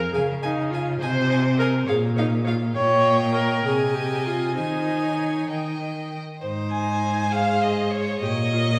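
A cheerful, lively classical-period string quartet movement in 6/8, cut from a longer piece, in which a focused violin with vibrato carries the melody over a more distant second violin line, while an up-front viola supplies smooth accompaniment and a rich cello holds the bass, each bowed by a single player in a wet scoring-stage reverb heard from further back in the room, with a new section arriving at 6.4 seconds.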